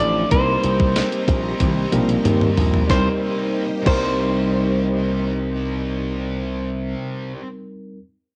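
A growly, punchy slap bass with an envelope filter sits up front in this short cut from a dramatic, urgent 1980s-style pop piece in C minor, moving at 93 BPM in a straight 4/4 over a Cm7 chord. Beside it, a clean 12-bit digital drum machine with a thumpy kick, medium-tuned snare, hi-hat, tambourine, crash cymbal and toms comes in at 0.3 seconds, plays a fill from 1.6 seconds and drops out at 4.0 seconds. A compressed, direct-recorded clean electric guitar carries the melody in a narrow upper range, colored by tube saturation, spring reverb and tape echo. Underneath, a bright, double-tracked high-gain guitar with lush chorus adds picked accompaniment, a warm tine electric piano heard through its built-in speakers fills in the background, and a vintage sawtooth string machine voiced as violas, with soft attack and evolving ensemble chorus, holds sustained chords behind them. The whole thing has the character of a home cassette recording, set in a moderate studio reverb.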